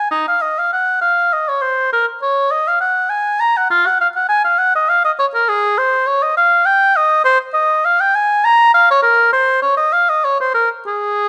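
A moderate stone-room reverb with a 1.3-second decay surrounds this recording, and nothing sounds above 10.3 kHz. It is a short classical passage, a baroque-style fantasia for unaccompanied oboe, cut from a longer piece and lasting 11.3 seconds. The oboe plays alone throughout, up front, with a warm tone, a light vibrato and a classical style, ranging from Eb4 to Bb5. The mood is radiant and flowing, moving in 3/4 at around 100 BPM with a rubato feel. The key settles into Ab major from 5.5 s, giving the second half a clear tonal centre.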